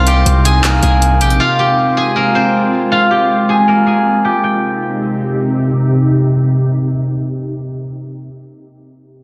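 A half-time trap beat at 158 BPM in C minor drives this brooding, hard-hitting hip hop excerpt, with overdriven electronic drums of handclaps and bright hats and a punchy, saturated 808-style bass, both of which stop at 1.4 s. Up front, a fingerpicked steel-string zither rings out a silvery melody until 6.9 s over an ethereal FM pad of sustained chords treated with ensemble chorus and its own reverb, as a filter sweep runs through the first 4.4 s and the harmony moves from C minor to F minor and back. The dense, heavily limited master sits in a moderate stage reverb and carries lossy compression artefacts.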